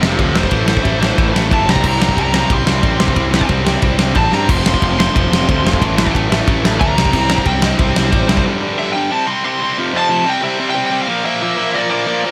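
Rebellious and energetic, this punk rock excerpt charges along at 182 BPM in a straight 4/4, in C major, moving through chords such as F5, Am, C5 and G5 before a closing turn to Bb. Up front, a tight, bright, double-tracked distorted guitar picks the riff, while a lead guitar through a small cranked amp, overdriven with a touch of delay, plays a solo across the opening stretch. Beneath them, a growly fuzz-laden picked electric bass and a big acoustic rock kit with a fat snare, tight kick and glittering cymbals drive the rhythm, with a drum fill at 4.3 seconds. Bass and drums drop out at 8.4 seconds, leaving the two guitars for a brief break before a new section begins at 9.8 seconds. The mix is dry, with little reverb.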